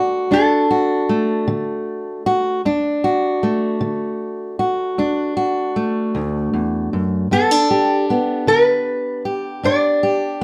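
This is a short excerpt of acoustic country blues for two guitars, with a swaggering, soulful mood and a slow, straight 12/8 feel. A metal-body resonator slide guitar carries the melody from start to finish, its bright, metallic, nasal voice sitting up front as the slide and fingerpicks shape each phrase. Beneath it, a fingerpicked steel-string acoustic guitar with a dark, auditorium body supplies the accompaniment, reaching from deep bass notes up into its middle register. Both instruments sound close and present, balanced evenly in a moderate studio reverb. The harmony rests on D before moving to G at 7.3 seconds, and the clip ends at 10.4 seconds, cut from a longer piece.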